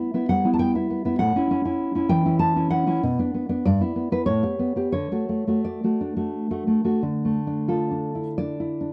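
In a rubato 3/4 that drifts between 83 and 101 BPM, this sunny, tender romantic piece for solo nylon-string guitar in D major sets a dark, full-bodied, thumb-plucked tone up front in a dry, close 1970s-style studio sound, spanning G2 to A5 with finger squeak audible as the harmony moves from Em/G through A9 to D at 4.9 s before turning to D minor at 7.0 s for the closing stretch of this 8.9-second excerpt from a longer piece.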